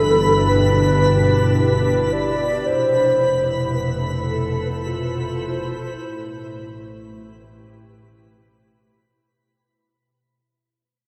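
Ambient piece at 55 BPM in 3/4, peaceful and weightless, where a mellow, hollow alto flute with delay carries an airy, tongued melody until 8.1 seconds over a glassy FM pad with ensemble chorus, a bowed double bass section of gut-string warmth and light vibrato, a calm organ-like drone touched by ring modulation and a moving notch, and a twinkling granular texture with octave-up shimmer, all moving through G, F and Am7 inside a lush hall reverb with dark, warm production while a fade-out runs from 0.5 to 9.3 seconds in this cut from a longer piece with lossy compression artefacts.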